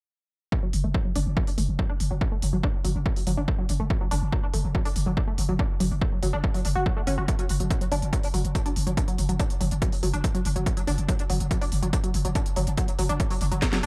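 A punchy, up-front electronic kick drives this dark, industrial peak-time techno cut in F# minor at 142 BPM, joined by a detuned sawtooth sequenced synth riff soaked in chorus, phaser, overdrive, 12-bit sampler grit, sidechain pumping and dub echo under a filter sweep, a growling, buzzy 808-style bass on F#1 with overdrive, sidechain pumping and a low-pass filter, and a tape-toned techno kit of cracking snare and smooth hats, inside an echo-heavy digital ambience, with a drum fill arriving at 13.6 seconds near the close of the excerpt.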